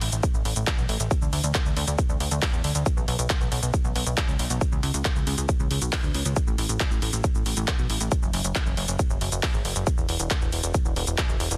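Uplifting trance at 137 BPM in A major, euphoric in mood, this short cut pairs a plucky, detuned sawtooth bass with tube saturation and sidechain pumping, a punchy analog drum machine with tape-tinged handclaps, hi-hat and shaker pumping in the same way, and an up-front layered electronic kick entering at 0.2 seconds, all sealed in a dense, heavily limited modern master with lossy artefacts.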